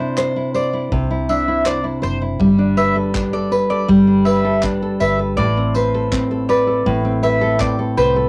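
Carefree and heartfelt, this short acoustic pop excerpt in G major moves at an easy, straight 81 BPM in 4/4. Up front, a fingerpicked nylon-string guitar with fresh strings, a deep classical tone and audible finger squeak carries the accompaniment, while a warm, round mandolin spins picked double-string arpeggios up high and a dark, foam-muted vintage electric bass adds amped low-end weight. From 0.2 s, a softer unplugged kit of handclaps, tambourine, bundle sticks and a punchy kick enters, colored by cassette tape, as the chords move from Cadd9 to Gadd9 at 2.4 s and Amadd9 at 5.4 s, all within a snug booth ambience that suggests an intimate home recording on cassette.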